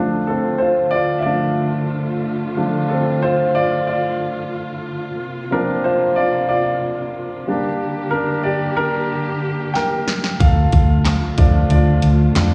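A polished, present grand piano with slapback echo leads this earnest, dramatic piano-driven pop excerpt in D minor at 92 BPM, moving from Dm through Bbsus2 and Gm over lush, bowed studio strings with expressive vibrato, until a punchy, layered electronic house drum kit with bright hats enters on a fill at 9.8 seconds and a dark, round, foam-muted vintage electric bass joins at 10.4 seconds, the mix carrying the light reverb of a live gig heard through a venue's PA.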